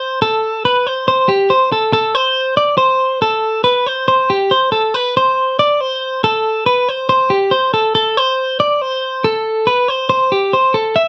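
Pulsing in a straight 7/8 at 279 BPM counted in eighths, this intricate, bright rock excerpt features a solo clean electric guitar, picked and compressed, sitting up front with a warm tone between G4 and E5, played from 0.0 to 11.1 seconds in a moderate studio reverb.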